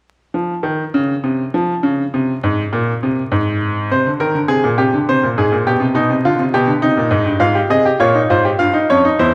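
Solemn and serious, this brief excerpt from a longer piece is a baroque-style fugue in three parts for solo grand piano, set in F minor at 102 BPM in a straight 3/4. A bright baby grand plays alone from 0.3 to 9.3 seconds, spanning E2 to F5 with a brilliant, natural tone placed up front. The opening is unharmonised, and harmony begins to take shape at 3.9 seconds, moving through chords such as Abadd9, G7/B, Cm and Fm/Ab before reaching Eb9. A moderate concert hall reverb, with a decay of 2.1 seconds, surrounds the instrument. A layer of vinyl crackle gives the sound an aged surface.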